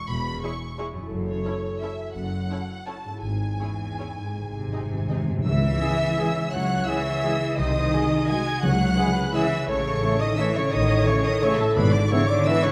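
A lush violin section carries the melody of this dark, sweeping orchestral ballroom waltz, its expressive vibrato singing high over a flexible, rubato three-beat lilt. A second violin line, bright violas and a ringing, fingerpicked concert harp sit in the background. Focused, close cellos and soft-attack double basses anchor the bass. Round, soft-mallet timpani enter with a fill at 4.4 seconds, and from 5.5 seconds a hollow, pure-toned flute adds a second line. Shortly after, at 5.8 seconds, very quiet mellow French horns and tight trombones sustain chords, while a distant, roomy trumpet adds stabs. The cut from a longer piece sits in a dark production with a wet scoring-stage reverb, and the harmony moves through minor chords with dominant turns.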